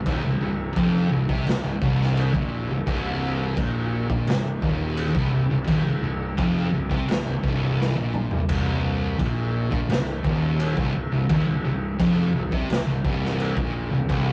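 A rough rehearsal-room recording, saturated like cassette tape and bathed in wet studio reverb, carries this hypnotic, brooding stoner and doom metal cut at 85 BPM in C minor, resting on a C minor chord. Two thick fuzz guitars play the picked, dark, distorted riff, one of them set in the background, while a growly, bright fingered electric bass adds overdriven weight. The raw garage drum kit sits up front in a small, pumping room, with a punchy kick, medium-tuned snare, crash and toms, gritty 12-bit sampler character and a rolled-off top, and it breaks into a fill at 7.8 seconds.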